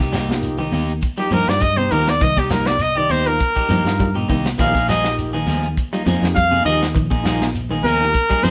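Afrobeat with a driving, intense mood, played by a band live together in a stone room with a moderate reverb. A clear, close-miked trumpet sits up front, entering at 1.2 seconds to carry the solo melody with a light vibrato in a pop style. Beneath it, a tight funk kit of hi-hat, kick and medium-tuned snare sounds dry and polished, alongside a round, punchy fingered bass whose foam-muted tone is dark and direct. A slightly broken-up electric guitar plays picked stabs, while a clean semi-hollow guitar picks arpeggios in the background and a vintage combo organ adds mellow accompaniment with its own vibrato. Bright, hard-handed congas and a grainy shekere fill out the percussion behind the band as the harmony moves from Cm7 to Bb7sus4 at 4.6 seconds in this short cut from a longer piece.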